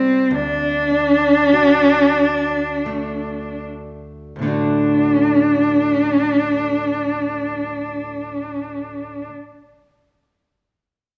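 A single bowed cello carries the melody, its rich tone shaded with vibrato and portamento, expressive and up front yet touched with a distant quality. This is a Celtic slow air in 3/4, wistful and pastoral, moving freely in rubato at roughly 36-52 BPM in D mixolydian. Beneath it, a fingerpicked steel-string acoustic guitar with a boxy, parlour character supplies the accompaniment, settling on a D chord at 0.3 seconds. The opening passage slows through its first 4.4 seconds before a second section takes over and runs until the cello stops at 9.3 seconds. A wet recital hall reverb surrounds the performance, giving the sense of a church or concert hall, and the recording is cut from a longer piece.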